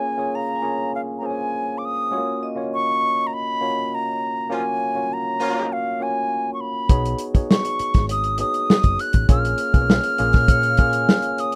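Romantic and warm, this brief excerpt of lush 1970s-style soul at 100 BPM in F# major sets a pure, up-front concert flute melody over a worn, slightly out-of-tune tine electric piano, with a metallic, ringing vibraphone in the background from 0.4 s, a distant, roomy horn section adding octave-doubled stabs on the band accent at 4.5 s, and a round, punchy hollow-body fingered bass and a dry, dark soul drum kit arriving together at 6.9 s, all within a rough home demo mix with light reverb.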